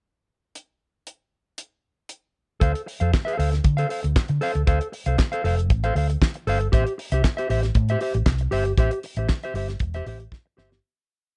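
A dry, damped 70s drum kit opens this short, danceable disco piece with a pickup bar at 0.6 seconds, laying down a four-on-the-floor beat with a tight kick, open hi-hats on the off-beats and a fat snare layered with handclaps. At 2.6 seconds the groove arrives, as a round, hollow-body short-scale electric bass enters with a syncopated, fingered disco line. A mellow, clean electric guitar joins at the same moment, playing a choppy sixteenth-note disco part over a Dm7 that later moves to Am7. The drums, bass and guitar all sit up front in a close, glamorous mix with little reverb and a dark production that keeps the top end soft. The piece fades out from 8.8 seconds, and a short drum fill rounds off the final moments.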